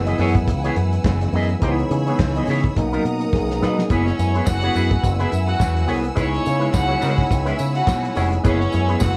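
Disco at 105 BPM with a glamorous, driving swing, this excerpt from a longer piece rides on a punchy, up-front fingered bass through an envelope filter and a dry, dark soul drum kit with gated reverb, a tight kick, handclaps, hi-hat and snare. A dark, clean picked electric guitar with its own envelope filter plays alongside a gritty, barky tine electric piano with medium tremolo that sits in the background, while a lush string section holds smooth sustained chords over F#9sus4, C#m7 and Bmaj7. After an electric piano fill at 3.0 s and a drum fill at 3.3 s, a reedy, gut-toned violin section adds a second line at 3.9 s, joined by a jingly tambourine.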